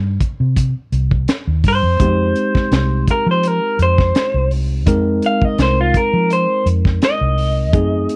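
The muted, foam-damped electric bass opens the clip, round and dark and up front, with a crunchy breakbeat kit joining at 0.2 seconds: a punchy kick, a high-tuned snare and hi-hat, saturated and gritty with a rolled-off top. This is a smoky, soulful straight-eighth soul blues at 84 BPM in 4/4, carrying a light 53% swing on the sixteenths. At 1.7 seconds an electric guitar through a small old amp takes the melody between F4 and F5, its fingered tone slightly broken-up, compressed and lo-fi. The tine electric piano enters at 2.0 seconds as the harmony moves from C5 to Fm7, sitting clean through a combo amp and lower in the balance than the other parts. The whole passage is a single section cut from a longer piece, captured as a dry, close 1970s-style studio recording in a small room.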